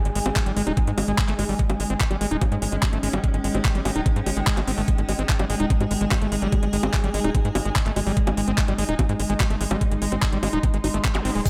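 Psychedelic trance at 146 BPM in Ab major, this driving, psychedelic passage cut from a longer piece sits in a slightly flat tuning and rolls forward in a straight 4/4. A knocking, tape-warm electronic kick enters at 0.4 s and sits up front, joined by a layered garage kit of bongos, handclaps, crash and metallic hi-hats, while a tight, punchy sequencer bass with a fast filter pluck drives the low end. Over this, a screaming acid line squelches through a resonant filter sweep, distorted and bright, with chorus, analog delay and sidechain pumping. Behind it, an evolving wavetable pad morphs through sustained chords and an ethereal, airy pad drifts up to C6, both mellow and soaked in built-in reverb, their chorus shimmering as they pump with the kick. A very quiet downlifter and zap open the passage and flick past near 11.1 s, and a grainy, close tube shaker lands at 11.5 s, all inside a light digital ambience.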